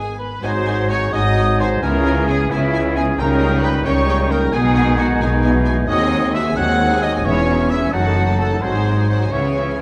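A rich, expressive double bass section sits up front in this urgent, dramatic passage, cut from a longer romantic symphonic movement, with a focused cello section joining it on the bass line. The music moves in a fast 6/8 at 88 BPM counted in dotted quarters, pushed and pulled by rubato, in G# minor, with harmony circling through G#7, C#m7 and a D#dim/F# before landing back on G#7 near 8.6 seconds. An intense, distant violin section carries the melody high in the background, while a smooth, even second violin section, a pure, crisp silver flute, a warm oboe and a very quiet, bright clarinet weave supporting lines around it. Beneath them, a very quiet viola section and a bassoon with light vibrato fill in the accompaniment, a mellow French horn section holds sustained chords, a dark, roomy trumpet section adds tight stabs, and a very quiet concert harp rings out fingerpicked arpeggios across a broad range. 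Close, detailed microphones and light reverb give the lush, bowed strings and classical-style winds a vivid presence throughout the 9.8 seconds.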